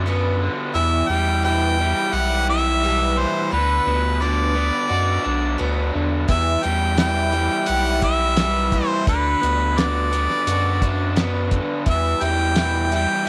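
Folk rock with a heartland rock streak, this wistful, reflective excerpt moves at a steady 86 BPM in a straight 4/4, centred on E minor and shifting between E minor and B minor chords. A picked twelve-string acoustic guitar, boxy and shimmering with its octave-doubled strings and a touch of analog chorus, sits underneath a raw, overdriven garage guitar that carries a double-tracked riff. A round, sine-like sub bass holds the low end up front, deep and sustained. The clear harmonica enters at 0.7 seconds as the lead voice, singing with a light vibrato and a smooth top. At 6.3 seconds a cloth-damped drum kit joins with hi-hat, a tight kick and a fat snare, its thuddy, dark sound rolled off at the top. Light reverb and a small room ambience surround the whole.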